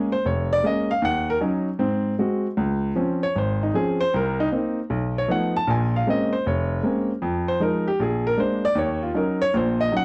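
A dry, close recording with a 1970s studio character and light reverb frames this swinging, moody solo jazz excerpt, where an up-front baby grand piano with a natural, short-sustained tone and a touch of slapback echo spans F1 to A5 as it moves through chords such as Bbm7, Dbmaj7 and Cb7#11 across 10 seconds cut from a longer piece.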